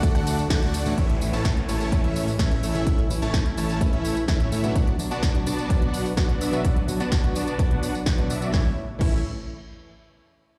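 Uplifting and triumphant, this short cut from a longer festival progressive house track rides a straight pulse led by an up-front, punchy, tape-warm electronic kick. A huge, detuned supersaw carries the riff with sidechain pumping, a low-pass filter and dub echo, while a dark, boxy fingerpicked acoustic guitar with a swing lilt plays accompaniment through its own pumping and dub echo. Beneath them, a fat analog bass drops out at 4.7 seconds and returns at 8.5, and a very quiet, lush pad holds sustained chords as the harmony moves from D to A to B minor and back to A. The layered dance kit adds crisp hats, a punchy snare, crash, ride and tambourine, with a band accent at 0.5 seconds; a brief, very quiet unison pluck arpeggio sounds only at the opening, and a faint downlifter runs from 1.0 seconds. The mix sounds as if played through a big sound system in a bare room, with large studio reverb around it.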